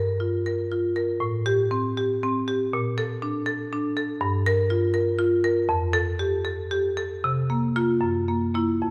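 Contemporary classical music for solo marimba, this short excerpt of a longer piece has a playful, warm mood and moves at 79 beats per minute in dotted quarters, in 6/8 with a rubato feel. The marimba, played with medium hard mallets on padauk bars, sounds woody, bright and percussive, with an airy quality, and sits up front from the first moment to the end at 8.9 seconds. Its part spans from F2 to Bb4. The harmony moves through Gm7, Am7, Bbmaj7 and back to Gm7, then on to Fadd9 and C7sus4 before a surprising turn to Gb7 at 8.0 seconds. Close, detailed microphones capture the bars clearly, while a moderate scoring-stage reverb with a 2.1-second decay adds space around the sound.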